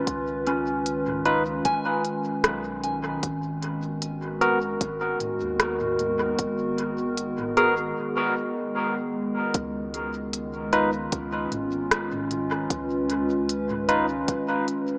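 Ambient dub at 76 BPM in 4/4 with a straight feel, this hazy, deep fragment is cut from a longer piece and sits in a wet spring reverb with an echo-heavy, small-speaker sound. A warbling, detuned tape-like pad holds dark, nostalgic sustained chords up front, moving from C#9 to G#m9 at 3.2 seconds and back to C#9 at 9.5 seconds, while a pure, gentle FM synth bell with chorus and tape echo spins arpeggios until 9.6 seconds. A soft, round dub sub bass anchors the low end beneath an electronic kick with a layered, deep, tape-warm thump. An organic electronic kit adds crisp hi-hat, rim click and toms, treated with dub echo and re-recorded in a small room. From 1.3 seconds a bright, barky tine electric piano cuts through with clean stabs through a combo amp, also drenched in dub echo, and a break arrives between 8.0 and 9.5 seconds before the second section begins.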